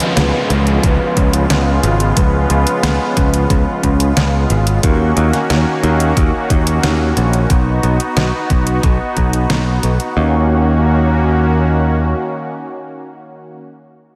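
Synthwave at 90 BPM in Eb minor, this driving, nostalgic passage is cut from a longer piece and bathed in a dreamy, reverb-soaked hall sound. A soft supersaw holds smooth, detuned sustained chords up front with sidechain pumping, moving through Db7, Ebm7 and B before returning to Ebm7 at 10.2 seconds. Beneath it, a bright, growly picked electric bass sits punchy and direct at the front of the mix, its tone shaped by a low-pass filter. A thumpy, overdriven electronic kick and a detuned 8-bit drum machine supplying a fat snare and hi-hat carry the beat, both with a small-room character, and the kick drops out at 9.3 seconds. At the start, mellow synth brass stabs, round and dark with chorus and tape echo, sit in the background until 4.1 seconds while a downlifter sweeps through the opening.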